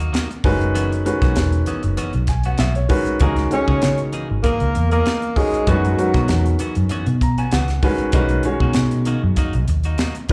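A lightly swung sixteenth-note feel in 4/4 drives this intense, nocturnal slice of electric jazz fusion, cut from a longer piece. Crisp, polished drums sit up front with a punchy kick, a high-tuned snare and hi-hat, while a dark, round, foam-muted fingered bass holds down the low end. A bright, twangy clean guitar plays compressed, picked stabs with a subtle chorus and slapback echo. A warm baby grand piano accompanies up front and adds fills, the first around 2.0 seconds. From 3.5 to 6.6 seconds a mellow alto saxophone carries the melody with vibrato, scooped notes and its own slapback echo, joined by a distant, roomy tenor saxophone that plays a second line in the background with a soft attack. The harmony moves from F#7sus4 to C#m69 and back to F#7sus4 before reaching Bmaj7, and the performance sounds like a live club gig heard through the venue's PA, with a touch of club reverb.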